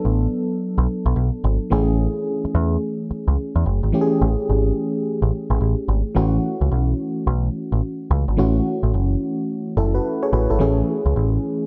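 A bouncy 4/4 groove with swung sixteenths drives this short, confident new jack swing cut taken from a longer R&B piece. An FM electric piano plays the accompaniment throughout, its vintage, mellow tone carrying a warbling tremolo, a fast attack that decays, and a faint noise layer underneath. Beneath it, a deep dub-style picked electric bass sits up front with a dark, round, punchy sound, holding the low end until 11.4 seconds while the piano carries on to the close. The harmony moves from Bm7 to Amaj7, then shifts at 6.2 seconds into a second passage of A6, F#m7 and a return to Amaj7. A plate reverb with a long tail soaks the mix, giving the piece a dreamy haze.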